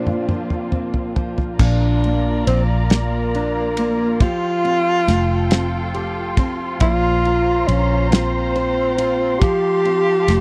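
Six-eight pop ballad, romantic and tender, cut from a longer piece and captured in a dry, close 1970s-style studio sound, opening with a drum fill on a damped 70s kit whose dark cymbals, tight kick and rolled-off top sit up front. A breathy, whispered tenor saxophone carries the melody with subtone, vibrato and scooped notes, over fingerpicked nylon-string guitar and a veiled, con sordino string section holding lush bowed chords. A round, foam-muted fingered electric bass joins at 1.6 seconds as the harmony moves between Bbadd9, Fadd9 and Bbsus2.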